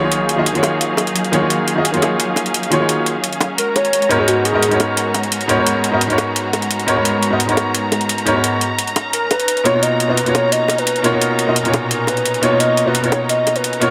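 Bathed in a huge ambient reverb, this dreamy, rolling liquid drum and bass excerpt sets a boxy, up-front grand piano with digital delay over distant, lush bowed strings. A gritty, overdriven sampler-style hi-hat and tight, dry, high-tuned bongos carry the pulse, and a hollow, woody clarinet-like synth lead with chorus and vibrato carries the melody from 3.6 seconds, returning at 9.1 seconds, as the harmony moves from Ebm11 through Abm11 to Bmaj9#11.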